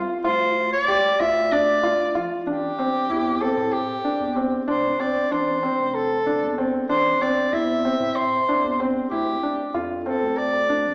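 This contemporary instrumental chamber piece in D minor moves in an urgent, pensive 7/8 at 190 eighth-note beats per minute, and is cut from a longer work. A felt-muted upright piano sits up front, playing soft, intimate arpeggios in its middle register with a thin, natural felt tone. Beneath it, a round analog bass supplies a deep, dark low line with a fast attack and sustained notes. From 0.2 seconds, a mellow soprano saxophone carries the solo melody in a classical style, its vibrato and roomy character placed up front. The harmony moves from D minor through Am7, F and A minor before returning to D minor, with a new section beginning at 2.5 seconds. A wet recital hall reverb surrounds the ensemble, heard from further back in the room with a small-speaker sound.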